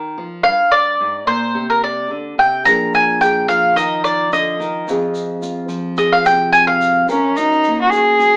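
Haunting and reflective, this short acoustic folk excerpt in F dorian moves at 108 BPM in a straight 4/4, with a thumb-plucked nylon-string guitar underpinning a bright, woody mandolin solo that sits up front, a grainy tube shaker murmuring in the background from 2.7 seconds, and a boxy, nasal bowed cello taking the melody at 7.1 seconds with vibrato, portamento and a slapback echo, all colored by moderate studio reverb and an AM radio sound.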